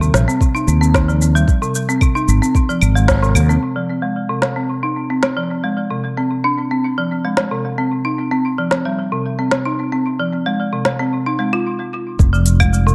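Earthy and meditative, this organic downtempo cut, taken from a longer piece, rests on a bright, woody folk marimba played with hard mallets, whose rustic arpeggios carry tape echo and a low-pass filter that sweeps from 3.6 s to 12.2 s. A dark, round fretless electric bass with tube saturation and sidechain pumping sits up front beside a soft electronic kick. Both drop away after the opening band accent and return at 12.2 s, just after a brief stop. Throughout, an organic electronic kit of claves, crisp hi-hat, shaker and woody snare keeps a lightly swung pulse under spring reverb in an echo-heavy mix.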